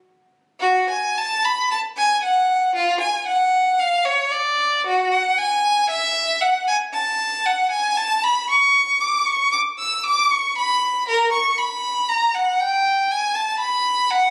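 In a free, rubato 4/4, this grave and solemn baroque-style suite movement is carried by a single bowed violin, playing solo from 0.6 to 14.3 seconds with a clear, smooth and even tone and vibrato, sitting up front. The violin is framed by a moderate recital-hall reverb, and the phone-in-the-room capture adds club ambience and compression. It is a short fragment cut from a longer piece.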